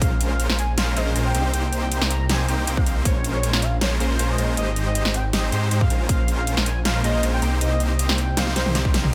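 This future bass excerpt sits in a half-time feel at 158 BPM in Bb dorian, with an emotional, bittersweet mood as the drop runs from start to finish, cycling through Bbm9, Cm7 and Abmaj7. A velvety synth lead carries the melody between C5 and Bb5, its smooth, wave-folded tone colored by chorus, vibrato and dub echo. Huge, bright supersaw chords drive the riff beneath it, while glassy digital keys with a filter sweep and decaying notes sit in the background as accompaniment. A thick, saturated detuned saw bass is up front, and every tonal part except the supersaws also carries chorus, with all of them pumping under sidechain. The big-room dance kit brings a huge snare, metallic hats and toms, punctuated by a punchy electronic kick at spots like 2.8 and 5.8 seconds, before a drum fill closes things out from 8.4 seconds.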